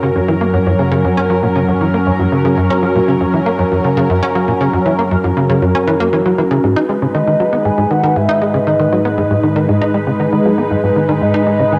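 Expansive and mysterious, this short cut from a longer piece of sequencer-driven ambient space music moves at 118 BPM in a straight 4/4, shifting from F# to G#m at 6.6 seconds. A lush, thick unison pad of detuned sawtooths with an airy noise layer holds sustained chords up front, its slow attack softened by chorus and phaser. Beneath it a tight, punchy sequencer bass drives a riff with sawtooth and square-wave tones, ring modulation and a fast, decaying filter pluck, colored by chorus and analog delay. Deep in the background an analog drone evolves on detuned sawtooth and pulse waves with pulse-width modulation and a moving notch, mellow and long-releasing. At 7.1 seconds a soft, round octave-layered lead enters with the melody, its triangle and sine tones and sub octave giving a dark fullness, touched by vibrato and analog delay. A wet spring reverb surrounds the mix, and the home cassette recording lends tape grain to the pad, bass and lead.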